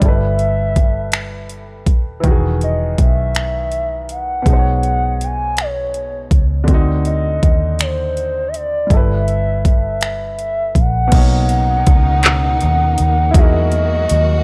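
A dry, gritty cassette-tape sound with digital ambience frames this slow six-eight R&B passage, cut from a longer piece, moving at 54 BPM in B major with a warm, sensual mood. Up front, an overdriven electronic drum kit sets knocking kick, metallic hi-hats, finger snaps, handclaps and crash cymbal against a dark, round, foam-muted fingered electric bass. A clear baby grand piano, intimate and natural with audible action noise, carries the accompaniment through rich chords such as G69, Emaj9 and D7b9. Above it, a smooth sine-like lead with chorus glides between notes with portamento, its detuned, mellow tone sustained and shaded by vibrato. At 11.1 s a close, bowed studio string section enters with warm, expressive sustained chords, lending the closing Bmaj9 and Emaj9#11 harmonies a warm lift.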